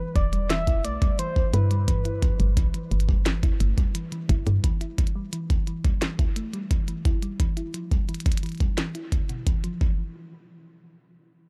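IDM at 87 BPM with an intricate, eerie mood, this cut from a longer piece opens with a thumb-piano-like synth pluck spinning tine-like, nasal arpeggios through chorus, cassette tape and tape echo under a filter sweep, while a soft, keys-like struck lead with vibrato sings a brief melody until 2.9 seconds, a woody, round FM bass sits up front until 4.6 seconds, and a gritty, thumpy pitched-up kick enters alongside a glitchy kit of tiny overdriven snare and clicky hats over Em and G in a dark, dry production.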